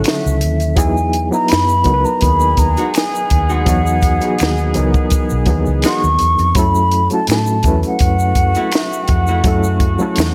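A mellow, hollow concert flute carries the melody in this relaxed neo-soul R&B excerpt at 83 BPM, riding a lightly swung 16th-note feel over Dmaj9, Emaj9 and F#m7 chords. A gritty, overdriven reed electric piano with fast tremolo fills the accompaniment, a vintage horn section adds stabs, and a round, foam-muted electric bass sits under a compact cocktail kit with a punchy kick and high-tuned snare, dressed with close finger snaps and egg shaker. A dark, clean archtop guitar enters at 2.8 s with a second line, all set in a light small-room reverb.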